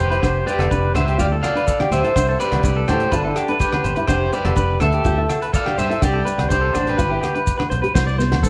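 A twangy, slightly broken-up electric guitar sits up front carrying the melody in this short, carefree highlife excerpt at 124 BPM in 4/4 with a straight feel, in C major. Beneath it a breathy, whispered trumpet with vibrato and a soft attack plays a jazz-style second line in the background, and both horn and lead guitar stop at 7.6 seconds. A second picked electric guitar through a small old amp spins lo-fi arpeggios, while a thumb-plucked classical nylon-string guitar adds quiet accompaniment and a round, dark fingered bass anchors the low end. The damped 70s kit is dry and mid-forward, with a fat snare, tight kick, rim click, hi-hat and crash, and a rolled-off top. Grainy maracas, ringing agogo bells and very quiet, bright congas that enter at 0.6 seconds fill out the percussion. Everything is set in a moderate large studio reverb around the joyful band playing live in one room, over an Fsus2, Dmadd9, Csus2 and Gadd9 progression that repeats and lands on a plain G the second time.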